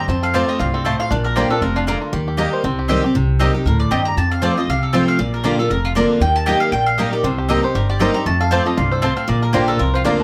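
Lonesome and rustic, this brief cut from a longer bluegrass piece races along at 235 BPM in 4/4 with a swung eighth-note feel, set in C dorian. A bright, full-bodied picked steel-string acoustic guitar sits up front as the accompaniment, its fresh strings ringing through the whole passage, while a woody, thumpy pizzicato upright bass anchors the low end. Two mandolins share the texture: one carries the melody with a round, picked double-string tone dressed in plate reverb and tape echo, and a second, mellower mandolin adds stabs from 0.3 seconds onward. A twangy, percussive fingerpicked banjo, also bathed in plate reverb, plays melody at the start, drops out after 3.2 seconds and returns at 7.2 seconds. The chords cycle through F, Bb, Eb and C minor, and the whole band sounds as though it's playing together in a small, moderately reverberant room.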